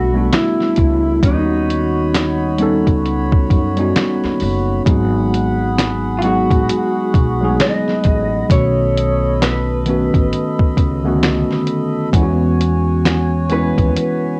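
A home cassette recording with moderate studio reverb gives this short lo-fi hip hop excerpt a hazy glow and a mellow, dreamy mood, with a relaxed swing in 4/4. A sampler-style drum kit sits up front from 0.3 s, pitched down and muffled, with a thumpy kick, a fat snare, hi-hat and finger snaps. Beneath it, a pizzicato upright bass on gut strings adds a woody, dark low end coloured by tube saturation until 13.9 s. A worn, slightly out-of-tune tine electric piano carries the accompaniment in a clean, direct tone, while an electric guitar through a small old amp plays the melody with a picked, slightly broken-up sound and a hand-pumped harmonium holds reedy, breathing, full sustained chords higher up. The harmony drifts from Gmaj9 through D#7alt, G#m7 and B7 before settling on E69.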